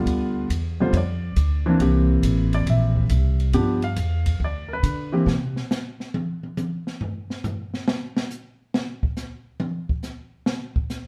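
Playful and warm, this swinging jazz piano trio fragment opens with an intimate concert grand carrying the melody over G7 and C7 chords. Its action noise is audible beneath a deep low end, while a woody, growly pizzicato upright bass and a dark, smooth drum kit with a punchy kick sit up front alongside it. The piano drops out at 5.3 s and the bass at 5.5 s, leaving the drums alone until 11.0 s, all in a moderate studio reverb.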